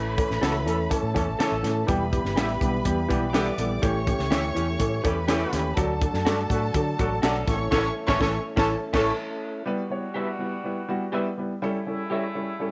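A light reverb and studio ambience surround this uptempo 1960s-style soul excerpt, passionate and driving at 123 BPM in a straight 4/4. An up-front, dark, woody upright piano and a compact cocktail drum kit, with a punchy kick, high-tuned snare and dark cymbals, lead the mix, while a round, foam-muted fingered electric bass anchors the low end. Behind them, a tonewheel organ holds sustained chords with light overdrive, key click and a slow rotary speaker, and an electric guitar through a small old amp adds slightly broken-up, lo-fi stabs with ensemble chorus. A rich, smooth chamber violin section and a tight, vintage-flavoured horn section carry second lines over the chords A, Em, A7 and D. The band hits an accent from 7.7 to 9.7 seconds. During it, the violins, bass and drums drop out at 9.1 seconds and the organ follows at 9.6. The piano and horns then carry the new section through the close at 12.7 seconds, with the guitar joining them until 12.2.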